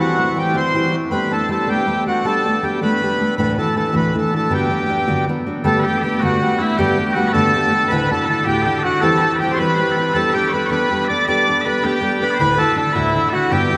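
A steady 6/8 jig at 106 dotted-quarter beats per minute drives this bright, rollicking Celtic folk excerpt in G major, tuned slightly low to A4 = 436 Hz. The accordion carries the melody from the start, reedy and rich and placed up front, while a fingerpicked steel-string acoustic guitar gives full-bodied jumbo accompaniment reaching down to D2. At 5.6 seconds, as the opening strain repeats, piercing bagpipes enter with a continuous second line that sits a little behind the other two in level. The harmony moves through colored chords such as Gadd9, Dadd9, Gmaj7 and C/E. A long, wet cathedral reverb of 5.7 seconds surrounds the performance with the sound of a church or concert hall, and the passage breaks off at 13.8 seconds as part of a longer piece.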